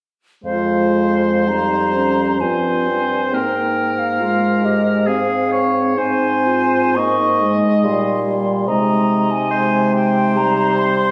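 A hollow, pure-toned silver flute with vibrato carries the melody of this solemn, elegiac slow romantic movement for wind quintet in F minor, moving in a rubato 3/4 at 56-73 BPM. An oboe with light vibrato sits up front as the second line, while a present, warm French horn and a dark, soft-attacked clarinet fill the accompaniment and a mellow bassoon holds the bass. The horn and bassoon enter at 0.4 seconds, with the other three following at 0.5 seconds, all heard from further back in a reverberant recital hall, in this fragment cut from a longer piece.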